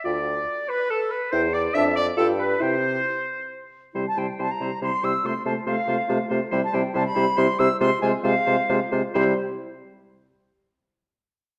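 Spirited and cheerful, this quick classical-period movement for wind quintet moves at 139 BPM in 3/4 and C major, shaped with a rubato feel and cut from a longer piece. The silver concert flute carries the melody high above the group, its pure metal tone touched with vibrato, tongued and expressive yet set back at a distance. Beneath it the clear oboe sings a second line with light vibrato and a roomy, distant presence, while the bright clarinet and the French horn, smooth at the top of its sound, fill in the accompaniment. The mellow bassoon anchors the bass with soft attacks and light vibrato, sitting up front in the mix and entering at 0.1 seconds. The harmony begins with a passage outside any chord before moving through C/E, Dm/F and G7, then settles on C at 4.0 seconds and later colours it with a shadowy Fm/C before returning home at 9.1 seconds. A wet recital hall reverb and a dark production wrap the ensemble in a resonant, rounded glow.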